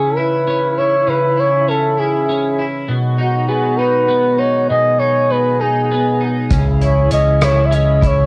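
A home cassette recording with moderate booth ambience carries this aching, dramatic six-eight pop ballad fragment in C# minor at 66 BPM, where a breathy, whispered flugelhorn with vibrato and plate reverb sings the melody up front over a bright, twangy, double-tracked twelve-string electric guitar and a mellow, distant brass ensemble holding sustained chords, until a punchy fingered electric bass and a soft-mallet drum kit with a boomy kick and cassette-tape grit enter at 6.5 seconds.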